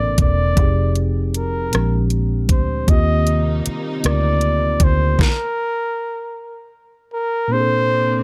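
Sensual and tender, this slow six-eight R&B excerpt sets a close-miked, soft-attack flugelhorn melody with light vibrato, scooped notes and a touch of delay over a mellow, clean tine electric piano, while an up-front, round, foam-muted fingered bass and a produced electronic drum kit with a knocking kick, deep snare and tape-warm hats carry the pulse. A bowed string section, played sul tasto with a smooth top, enters softly in the background at 2.9 seconds. A break opens at 5.2 seconds where the bass drops out and the drums fall away just after, leaving horn, piano and strings in a dry, intimate space until the opening chord returns at 7.5 seconds.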